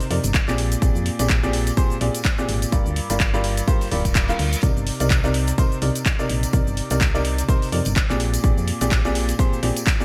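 A clear, woody upright piano opens this soulful, energetic piano house excerpt, playing a riff in C minor at 126 BPM with a 16th-note swing; the instrument sounds slightly worn and detuned, sits up front, and carries sidechain pumping and a digital delay. Alongside it from the start, a house drum kit of cabasa, handclaps and hi-hat brings a layered, tape-warm character with gated reverb, while a tambourine with maraca and group handclap colour sits quietly in the background. A punchy, round FM bass with a fast attack and dark decay arrives at 0.1 seconds, also pumping against the beat, and an up-front electronic kick drum lands hard from 0.3 seconds. The harmony moves through Cm9, Bb13 and Gm7 before returning to Cm9 and Bb13, and a faint reverse cymbal enters in the background at 4.0 seconds. The whole production has a bright 1980s-style digital sheen, with the kit and kick sounding re-recorded in a small room.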